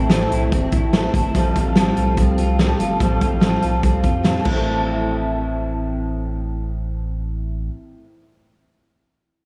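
Jangly indie pop with a bittersweet, restless mood, cut from a longer piece, moves between A minor and F add9 chords. A picked steel-string acoustic guitar with audible finger squeak plays under bright, twangy, slightly broken-up electric guitar arpeggios from a small old amp, treated with ensemble chorus and analog delay, while a deep, mellow sub bass with octave sits up front. A loose, gritty kit with a fat snare and punchy kick drives the first half before stopping at 4.6 seconds, leaving the guitars and bass in a dreamy mix soaked in lush hall reverb.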